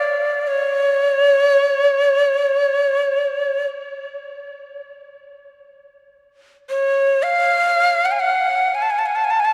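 This is meditative world music in free time, a haunting fragment cut from a longer piece and tuned slightly low to A4 = 437 Hz. A Native American-style cedar flute plays alone from 0.0 to 9.5 seconds, staying between C#5 and A5. Its tone is woody, breathy and bright, with a soft attack, a touch of chiff at the start of notes, vibrato, and a slightly unsteady quality. The flute sits up front and trails off into a diffuse ambient delay. A huge, wet reverb with a six-second decay surrounds it, and the overall production is dark and warm, giving the short phrase a vast space.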